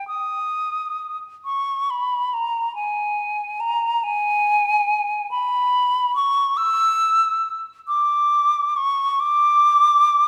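This excerpt opens in a resonant concert hall space, where a moderate reverb lingers around a single concert flute heard up front. The piece is classical and unaccompanied, a free, expressive solo in G# minor that moves in a rubato 6/8 at roughly 39-48 BPM counted in dotted quarters. The flute's tone is pure and hollow, colored by vibrato and clearly tongued notes, and it stays high in its range between G#5 and E6. The mood is nostalgic and serene, with the flexible pacing giving each phrase room to breathe. Lasting just 10.3 seconds, the passage is cut from a longer work and presents the flute alone throughout.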